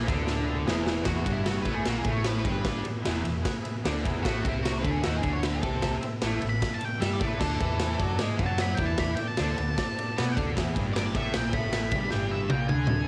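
Garage rock at 152 BPM in 4/4, rowdy and raw. It is cut from a longer piece and recorded at home on cassette with little reverb, moving through E, A5, D5 and back to E. Up front, a bright, double-tracked fuzz guitar riff and a punchy, gritty drum kit in a pumping stone room drive the track, with drum fills at 0.3 and 12.1 seconds. Beneath them sit a dark, round hollow-body bass and a buzzy vintage combo organ holding sustained chords with spring reverb in the background, while an octave-fuzz lead guitar enters at 1.0 seconds and solos through to the end.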